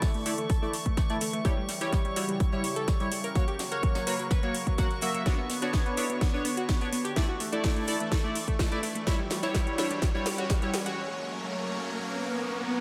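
A lush hall reverb with a digital sheen surrounds this dreamy, driving progressive house excerpt, which is one long build-up cut from a longer piece. A detuned supersaw pad holds sustained chords under a filter sweep and phaser. A round, evolving analog pluck spins bright arpeggios through chorus and delay, and a glossy, retro polysynth adds mellow pulse-wave stabs with a cassette-tape tint. All three synths pump against a punchy, up-front electronic kick. An overdriven house kit supplies cracking snare and metallic hats, while a very quiet brushed acoustic kit with a high-tuned snare sits beneath it, and a drum fill runs from 5.3 seconds. Drifting glass harmonics hover calmly in the background, an electronic riser enters at 7.5 seconds, and at the break at 11.0 seconds the drums and the other synths fall away, leaving the pad with the riser and a final swell.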